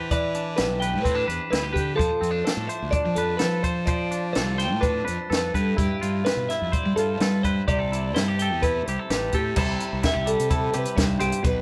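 Captured with light reverb, this short cut from a longer piece sounds like a band playing live together in one room. It is wistful, bright math rock with a midwest emo lean, moving at 127 BPM in a straight 4/4 in C major. Two picked electric guitars share a clean, twangy, compressed sound: a twelve-string spins bright arpeggios high up, while a second guitar supplies accompaniment across a broader, lower span. An overdriven, fingered bass sits up front with a growly fuzz tone, and a compact cocktail drum kit enters at 0.1 s, dry and natural, with dark cymbals, a high-tuned snare and a punchy kick. The harmony moves through Cmaj9, F6, G13 and C69 before a new section arrives at 9.6 s on C6.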